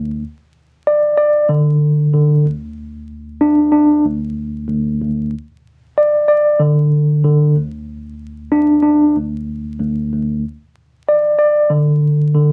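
A moody, gritty hip hop excerpt at 94 BPM in 4/4 with a light 16th-note swing, carried entirely by a solo tine electric piano that plays from 0.0 to 12.5 seconds across a range from D2 to D5. The piano sits up front with a mellow, clean tone heard through its built-in speakers, shaped by high-pass and low-pass filtering. Vinyl crackle and a moderate studio ambience surround it, and the passage moves from its opening section into a new one at 9.2 seconds.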